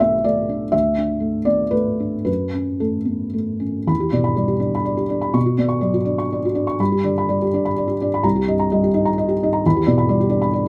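A felt-muted upright piano carries this brief fragment of neoclassical minimalist music alone, its tone soft, dark and intimate, with thick felt damping each note to a short sustain. The mechanical noise of the action sits audibly beneath the notes, giving the close, up-front sound a natural character. Played in 3/4 with a rubato feel, the music has a melancholic mood, ranging from deep B1 in the bass up to C#6. The harmony moves through Bm7, Dsus2 and F#m before a second passage begins at 3.9 seconds on Em7, then drifts through Bmadd9, G and a shadowed Cm7 before returning to Em7. A moderate studio reverb lends the piano a modest sense of space, and the clip breaks off at 10.7 seconds as a piece cut from a longer work.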